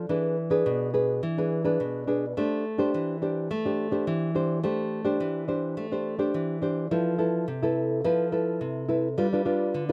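A straight 4/4 samba pulse at 106 BPM carries this lively, yearning fragment in A minor, where a lone nylon-string guitar, thumb-plucked with a warm, classical tone and set up front in a dry open-air sound, moves from E7 to Am7 before turning to Fmaj7#11 at 6.9 seconds and G7 near the close of a short cut from a longer piece.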